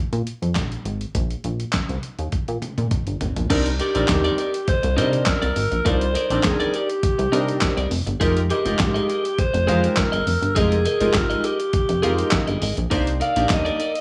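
A raspy, growling alto saxophone takes the lead from 3.8 seconds in this slick, danceable early-eighties boogie funk excerpt, just after a glossy, phased polysynth and a clean electric guitar riff in lush chorus enter at 3.5 seconds, all over a mellow chorused synth bass and a gritty, overdriven sampler-style drum kit with a thumpy kick, gated reverb and a fill at 2.3 seconds, in a dry small-room sound.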